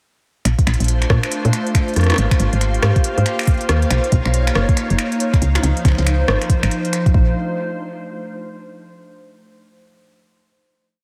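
Soaked in lush hall reverb, this dreamy, intricate and glitchy IDM piece swings at 139 BPM over Bbmaj9, Abmaj9, Bmaj9 and Dbmaj9, with a soft overdriven electronic kick up front beating a broken pattern, an overdriven organic electronic kit scattering snaps, smooth hats, rim clicks and toms in an ever-changing beat through diffuse ambient delay, a woody, round FM bass with tube saturation playing a syncopated riff, a glassy, ethereal FM pad holding chorused, pumping chords, and a bubbling stepped-filter texture sustaining a high note in the background until the groove gives way to a final hit at 7.4 seconds.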